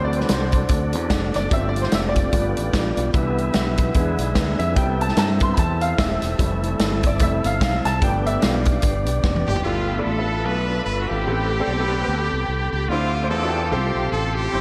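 A swung 4/4 groove at 148 BPM drives this soulful, reverent uptempo gospel excerpt, where a clear, intimate baby grand piano with audible action noise takes the lead until 9.6 seconds over lightly overdriven tonewheel organ chords with key click and fast rotary speaker, a warm fingered electric bass, and a punchy, up-front country drum kit that drops out after a fill ending at 9.6 seconds, when a brilliant, forceful trumpet and a lush background string section with vibrato and portamento carry the melody through delay, all bathed in dreamy hall reverb with lossy compression artefacts.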